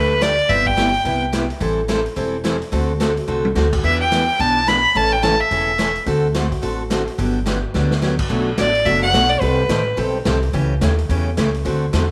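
A wet spring reverb and small-room ambience give this short cut from a longer western swing tune a lively, airy sound. At a brisk 215 BPM with a swing feel, the cheerful groove moves through jazzy chords such as Cmaj7/G, Am7, D7 and Gmaj7 before a second section turns toward Bm7, Cm6 and A7/C#. A single bowed fiddle sits up front with a clear, intense tone, light vibrato and a smooth top, carrying the melody in short phrases that enter at 0.0, 3.8 and 8.6 seconds. Beneath it, a bright, full-bodied dreadnought guitar is picked throughout, close to the listener, with audible finger squeak. A pizzicato upright bass with gut strings adds a woody, thumpy low end. Set back in the room, a big-band drum kit with a boomy kick, medium-tuned snare, hi-hat, toms and crash has a rolled-off top, and it plays fills at 3.3 and 7.7 seconds.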